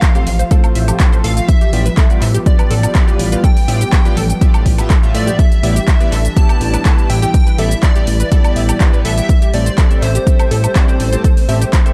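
Dark, warm digital ambience frames this dreamy yet driving progressive house excerpt in A minor at 123 BPM, where a punchy overdriven electronic kick and a deep house kit of metallic hi-hats, handclaps, cabasa and woodblock push beneath a fat, detuned analog bass, sidechain-pumped pad chords, glossy chorused polysynth stabs and lush background pluck arpeggios with dub echo, while a bright, catchy unison lead with filter sweeps carries the melody over a very quiet, intimate chamber violin section bowing a second line, all moving from F/A through G7/A and Em7/A to Am7.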